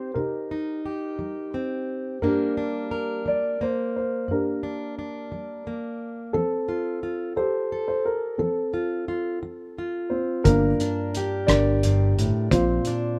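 This nostalgic, heartfelt folk-pop ballad excerpt opens with a dark grand piano carrying the melody over a fingerpicked steel-string acoustic guitar, both sitting up front in a dry, close sound. The piano is mellow and slightly boxy, while the plugged-in jumbo guitar gives a full-bodied, warm bed of accompaniment in a slow 6/8. The harmony moves from Cm through Gm to Fadd9, lending the opening a wistful, searching quality. At 10.5 seconds a fingered electric bass enters with a round, punchy low end, joined by a cloth-damped, thuddy drum kit of hi-hat, tight kick and rim click. The drums sound muffled and gritty, with a saturated, lo-fi character and a rolled-off top, as the chords shift to Gmadd9 and then Bbadd9 before the passage is cut off.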